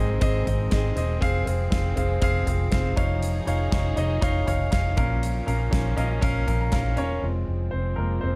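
This short cut from a longer piece has a dark, warm production bathed in studio reverb. It is hopeful, anthemic piano-driven pop at 120 BPM in a straight 4/4, tuned slightly under standard pitch to A4 = 439 Hz, with chords moving from Ab to Fm, Dbadd9/F and Bbm before returning to Fm. A clear, up-front baby grand piano carries the accompaniment across a broad register, while a vintage muted fingered electric bass supplies a round, amped low end. Behind them, a warm studio string section holds soft-attack sustained chords, bowed sul tasto so they sound pure, floating and distant. A huge arena drum kit with a punchy kick, medium-tuned snare, hi-hat and toms rings in a hall-like space before dropping out at 7.1 seconds. The piano adds a fill from 5.7 seconds and then takes a solo from 7.2 seconds over the bass and strings.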